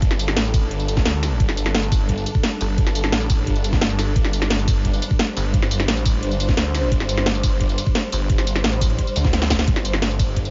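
Dark technical drum and bass at 174 BPM in 4/4, with a straight feel and a mechanical, dark mood across this 10.5-second excerpt. A snarling distorted saw bass sits up front in the low register from G1 to D2, growling and aggressive, with a detuned unison of sawtooth, square and sine layers, a moving notch, a fast attack, and distortion, overdrive and compression. Behind it, a swarming granular drone holds sustained chords between G3 and C5, its slow attack, long release and built-in reverb giving it a tense, evolving shimmer while sidechain pumping makes it breathe against the beat. The drum kit is placed up front, with a cracking snare, metallic hats, ride cymbal and tambourine, layered and tape-warm after being re-recorded in a small room, and a knocking electronic kick carries the same treatment. A brief drum fill arrives at 9.3 seconds, and the whole track is framed by a dim digital ambience whose top end stops at 7.4 kHz, with the harmony resting on G5.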